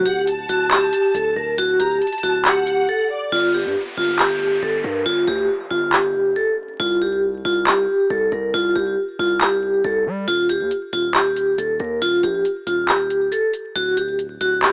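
A lo-fi, cassette-style home recording with vinyl crackle and an AM-radio tone, kept dry with little reverb, frames this dark, melancholic hip hop and trap cut from a longer piece. A vibraphone struck with hard mallets carries the melody up front, its metallic, ringing tone smooth and shadowy with a medium motor vibrato and its own layer of tape coloring. Beneath it, a punchy 808-style bass with a sine body, a noise layer and a fast, decaying attack moves through chords of D, G, C and Eb, while an electronic trap kit of handclaps and hi-hats sits up front in a half-time feel. A clear, focused string section of bowed violins, distant and touched with analog delay, adds a second line only in the opening seconds before a brief break. At 3.3 seconds an electronic downlifter sweeps in and runs until 6.8 seconds, and the hi-hats drop out until 10.3 seconds before returning for the close.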